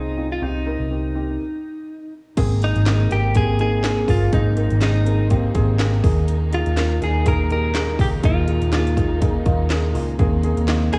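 Warm and anthemic, this piano-driven pop excerpt opens with a dark, woody upright piano with audible action noise, a clean, direct-recorded electric guitar melody touched with digital delay, and a round, foam-muted fingered bass, all pausing for a brief stop before the fuller section arrives at 2.4 seconds. There a punchy, up-front house drum kit with a cracking snare, metallic hats and handclaps enters alongside a lush, bowed string section sitting in the background, while a crisp group handclap is barely audible from 2.9 seconds. The whole recording carries the warble and pitch drift of worn cassette tape, with light reverb and studio ambience over a swung sixteenth-note feel.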